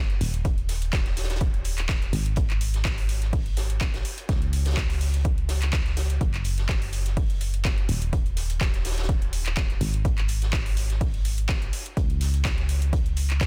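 Densely and heavily limited with a studio reverb, this bittersweet, soulful piano house excerpt in Eb minor moves at 125 BPM with a light swing. A round, fast-attack FM bass pumps up front against a punchy, tape-warm electronic kick, while a garage kit's overdriven handclaps and metallic hats layer over a soft-mallet kit's filtered hi-hat and medium-tuned snare in a small room.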